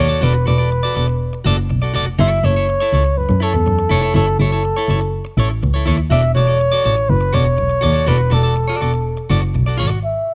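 Celebratory and danceable, this short disco excerpt moves at 122 BPM in a straight 4/4, with the harmony shifting from E9sus4 to F#m7 at 2.2 seconds and back to E9sus4 at 6.1 seconds. A breathy flugelhorn carries the melody up front as a jazz-style solo, its soft attack, vibrato and smooth top rounded further by a low-pass filter, and it lingers until 10.3 seconds. Beneath it, a muted double bass played with the bow by a single player sits prominently in the mix, its tone veiled and boxy with a light vibrato. A clean electric guitar supplies picked accompaniment with a dark tone. The whole track has a dark, warm production set in a small room ambience.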